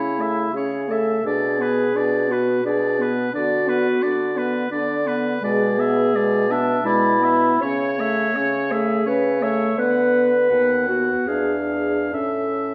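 Heard in a reverberant recital hall with a 1.4-second decay, this tender fragment of a slow romantic movement for wind quintet is cut from a longer piece. In A major and 3/4, it moves with rubato at roughly 68-88 BPM, so its phrases breathe freely. The clarinet sits up front, its warm, roomy tone carrying the accompaniment in the middle register, while the French horn adds a gently vibrating cushion beneath. A clear, distant oboe traces a second line above, and a mellow bassoon with a soft attack and light vibrato anchors the bass from afar. The harmony passes through B minor and E7 colours before a B major chord and an E7b9 resolve to A major at 12.1 seconds.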